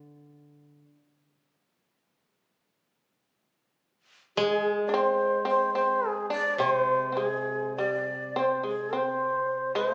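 Calm and austere, this brief excerpt of Japanese traditional music moves in a free, rubato 2/4 at roughly 49-56 BPM. A dry, woody koto plucked with fingerpicks sounds first in its low register, falls away, then returns at 4.4 seconds as accompaniment. At that point a mellow, airy shakuhachi takes the melody up front with a straight, tongued tone, its bamboo breath sitting higher than the other parts. Alongside it, a fretless shamisen adds a second line, plectrum-plucked, percussive and buzzing with a powerful bite. The sound carries a moderate concert hall reverb mixed with the character of a phone recording made in the room, and a brief new section begins at 8.9 seconds before the cut at 9.9 seconds.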